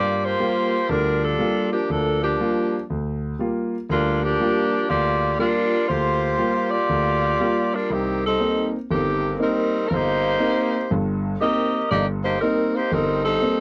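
Swinging and brassy, this jazz excerpt cut from a longer piece moves in 4/4 at 120 BPM with a lilting swing on the eighth notes. A mellow saxophone section carries the melody up front, its vintage big-band ensemble tone colored by vibrato as it ranges from low Eb3 up to Eb5. Beneath it, an intimate concert grand piano plays the accompaniment, reaching down into deep bass and letting audible action noise come through. The harmony settles on Gm7 before shifting to Cm7 at 7.9 seconds, and both parts play together from the opening through the cut at 13.6 seconds. The sound is a dry, close studio recording in a 1970s style, touched with light reverb.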